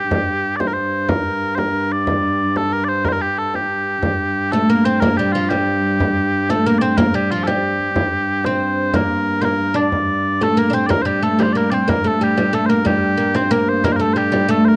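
This medieval dance in G minor moves at 122 BPM in a straight 6/8, counted in dotted quarters, with an ancient, driving mood in a short section cut from a longer piece. Small bagpipes carry the continuous melody up front, their mellow, sweet tone touched with vibrato and a tape echo. Beneath them a dark viola da gamba holds a low G drone, a single bowed, fretted player whose airy, boxy sound rings with light vibrato, while a deep, large frame drum keeps the percussion going in a small-room sound. At 4.5 s a fretless, plectrum-plucked oud joins with a second line, its double strings giving a woody, acoustic voice that also sits up front. A new section begins at 11.9 s, and the whole performance has the dry, close feel of a 1970s-style studio recording with light reverb.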